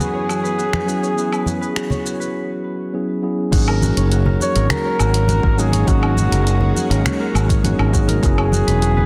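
A straight 4/4 pulse at 102 BPM sets an easy, smooth sunset chillout groove in G# minor, built from a tape-warm deep house kit of hi-hat, shaker, finger snaps, woodblock and crash, with soft clipping on the snare. Low-tuned, ringing congas join in the background at 0.7 seconds, and at 3.5 seconds a deep, layered electronic kick arrives alongside a growly, up-front fretless electric bass that anchors the low end. Over this, a mellow flugelhorn carries the jazz-style solo melody with light vibrato, while a clean tine electric piano comps beneath it, both trailed by digital delay. A bright, thumb-plucked Celtic harp ripples through arpeggios in the same register as the horn, passing through a filter sweep in the opening section, and a silky, warbling vintage string machine holds slow-attack chords with ensemble chorus in the background. The harmony moves between F#9sus4 and G#9sus4, all set in a lush hall reverb and a dense, heavily limited modern master for a relaxed mood in this short cut from a longer piece.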